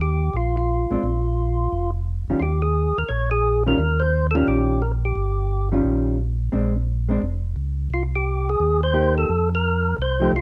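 Greasy and swinging, this short soul jazz organ trio passage moves at a brisk 174 BPM in 4/4 with a 64% swing on the eighth notes. A percussive tonewheel organ carries the melody, its fat, lightly overdriven tone marked by key click, third harmonic percussion and a slow rotary speaker, dropping out briefly between 5.7 and 7.9 seconds before returning. Underneath for the whole stretch, a second tonewheel organ handles the bass line with a mellow, round, dark voice, treated with chorus vibrato and its own slow rotary speaker. A hollow-body jazz guitar enters at 0.9 seconds to comp with a clean, fingered, electric sound. All three parts sit up front in light reverb, moving through Ebadd9, Eb9 and Bb9 before settling on Cm7 and F.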